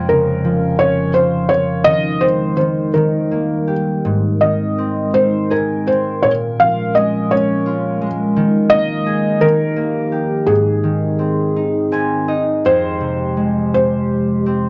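A gentle, innocent children's lullaby opens with a ringing acoustic concert harp and a warbling, nostalgic pad that sustains lo-fi detuned chords, joined almost at once by a soft, felt-muted upright piano carrying the melody. The music sways in 6/8 at about 56 BPM (counted in dotted quarters), with a rubato feel, in Ab major tuned to A4 = 439 Hz. The piano sits up front with a mellow, intimate tone and short sustain, while the harp, also close, supplies warm accompaniment. The pad's slow-attack chords pass through chorus, phaser and its own reverb for a hazy glow. The harmony drifts through Bbm/F, Abadd9, Bbm7 and Ebsus4 before a brief harp fill from 11.6 to 12.7 seconds leads into a new section on Fmadd9. The sound is dry and close, in the manner of a 1970s studio recording with light reverb, and this excerpt is cut from a longer piece.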